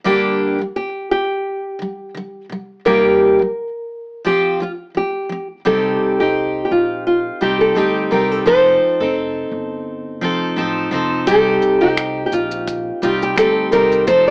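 A gently swung sixteenth-note lilt at 86 BPM in 4/4 carries this tender, reflective acoustic pop excerpt in G minor, where an up-front, full-bodied picked steel-string guitar with old strings lays down the accompaniment and a small, fingerpicked nylon-string guitar enters at 0.8 s with the melody, dressed in slapback echo and plate reverb. A woody, thumpy pizzicato upright bass joins quietly at 5.7 s, and a studio drum kit with finger snaps, shaker and a punchy kick arrives at 11.3 s. The whole recording has an AM radio sound in a moderate studio ambience, moving from Gm/D through Cm7 and Fsus2 to Cm and F7.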